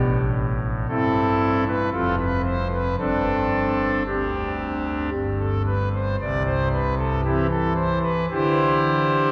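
A solo pipe organ on its foundation stops carries this brief classical excerpt, its thick, warm sound set up front and spanning F1 to D5 in a romantic voicing. The chorale-style writing moves at a stately 57 BPM in 3/4 with a straight feel, tuned to A4 = 444 Hz, and the mood is majestic and reverent. Centred in C major, the harmony passes from A minor to an F5 chord at 1.9 seconds, then to Gsus4, a moment of unharmonised texture at 5.1 seconds, and a settling on C at 6.2 seconds. A wet cathedral reverb with a 4.3-second decay surrounds the organ, heard from further back in the room. The single passage lasts about 9.3 seconds, lifted from a longer work.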